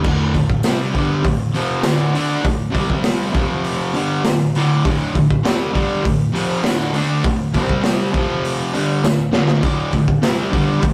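A double-tracked fuzz guitar and a boomy, saturated garage drum kit open this raw, swaggering excerpt together at a straight 100 BPM in D minor, the bright, compressed riff cycling through Dm, C5 and F5 before landing on D5. A jingly tambourine sits in the background from 0.6 seconds, while the up-front kit, with its medium-tuned snare, crash, splash and gritty, rolled-off top, pumps in a small room and drops a fill at 9.0 seconds. The whole rough rehearsal-room take carries tube saturation and a stone-room reverb.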